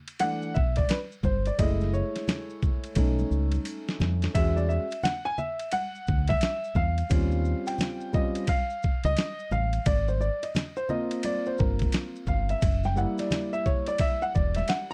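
A swung 87 BPM boom bap groove from a gritty, pitched-down sampler drum kit with a thumpy kick and a drum fill at 3.0 seconds anchors this nocturnal, mellow jazz-hop excerpt, where a round, punchy fingered electric bass sits up front beside a worn, intimate grand piano soloing with audible action noise and long sustain over chords such as F#m7, B9 and D#13, while ringing maracas and congas with hard hands stay in the background of a dry, close 1970s-style studio sound.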